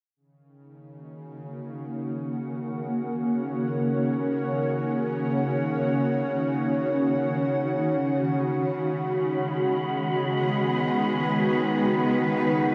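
Serene and reflective, this ambient passage drifts in free time and is cut from a longer piece. A shimmering, ethereal pad sits up front, holding sustained chords that move from D#m7 to G#m7 at 7.9 seconds, its detuned, chorused tone darkened and lifted by an octave-up shimmer reverb. Beneath it, a bowed-like drone on C#3 has already entered at 0.9 seconds, just ahead of the pad, a nasal, string-like sound with vibrato and a faintly tense edge. At 8.7 seconds a breathy, wind-like tuned noise texture on B5 joins quietly, adding an airy layer with its own shimmer reverb. Every part fades in slowly and lingers on long releases, and the dreamy mix is soaked in a lush hall reverb that leaves the sounds hanging in the air.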